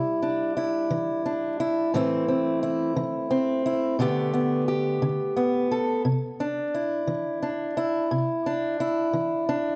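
Anthemic yet nostalgic, this brief folk excerpt is cut from a longer piece and unfolds in a slow 6/8 at 58 beats per minute, pitched in C major. A lone fingerpicked acoustic archtop guitar carries the whole recording from 0.0 to 9.8 seconds, sitting up front with a warm acoustic tone, and the faint squeak of fingers on strings is audible. Its range spans from A2 up to A4, and a slapback echo gives the notes a short, doubled edge. The harmony moves from Cadd9 to Am, then to Gadd9/B at 4.0 seconds, before settling back on Cadd9. A moderate reverb suggests a large scoring stage, lending the guitar an airy, spacious halo around its close, intimate sound.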